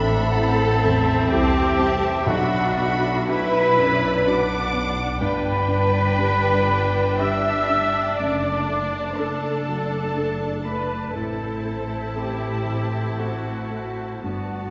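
Moving and hopeful, this cinematic film-score excerpt unfolds in a rubato 3/4 as veiled, con sordino violins carry the melody with vibrato and a soft attack, joined by a pure, straight-toned flute, a second muted violin line and a distant clarinet. Underneath, a dark, mellow grand piano and rich muted violas accompany while a tight, mellow French horn section holds sustained chords, and lush muted cellos and double basses anchor the low end. The whole orchestra sits far back in a wet scoring-stage reverb with softened highs.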